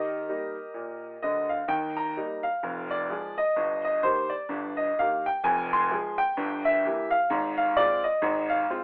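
Stride piano jazz in Eb major, swinging and playful at 128 BPM, with 59% swing on the eighths in this brief 8.8-second excerpt cut from a longer piece. A solo grand piano carries everything from 0.0 to 8.8 s, its warm, boxy tone sitting up front and ranging from F1 to C6 as the harmony moves from Eb through diminished passing chords to Fm and Fm/Ab. A moderate club reverb surrounds it, while a telephone-like filter gives the whole recording a thin cast, and the piano is tuned slightly flat at A4 = 438 Hz.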